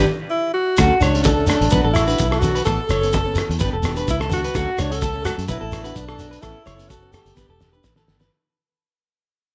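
A band accent opens this joyful, danceable highlife excerpt, cut from a longer piece, with a drum fill at 0.4 seconds leading into a steady 128 BPM groove in D major that fades out from 0.8 seconds onward. A twangy, slightly broken-up electric guitar spins arpeggios through plate reverb and analog delay, while a boxy picked steel-string acoustic guitar with fresh strings and audible finger squeak plays accompaniment in the background. A round, dark fingered electric bass anchors the chords as they cycle through Dmaj7, Bm, Aadd9 and G. Up front, a bright alto saxophone carries the melody in a jazz style from 0.3 seconds, with light vibrato and scooped notes. The cloth-damped drum kit sounds muffled and gritty, with a fat snare, tight kick, hi-hat and rim click, joined by a grainy shekere and thin-skinned, low-tuned congas that drop out at 4.4 seconds, and a second drum fill arrives near the end.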